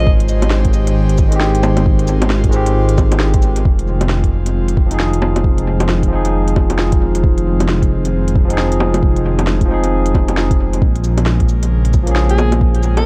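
An echo-heavy digital ambience surrounds this melancholic, wistful slice of future garage, cut from a longer piece and moving at 134 BPM in 4/4 with a 62% swing on the sixteenths in F minor. A deep, rumbling detuned saw bass sits up front, its beating unison tone pumping against the soft electronic kick, which was re-recorded in a small room alongside an organic electronic kit of bongos, cabasa, crisp hats and a woody snare treated with dub echo. A barky tine electric piano played clean through a combo amp supplies the accompaniment, pumping and echoing. Behind it, an airy, breathy pad with chorus holds sustained chords in the background. The harmony settles on Abmaj7 before moving to Fm7 at 3.7 seconds and Bbm7 at 10.8 seconds. A bright, pop-style alto saxophone with light vibrato offers a brief solo phrase at the very start and returns at 12.3 seconds, its present tone trailing off into dub echo.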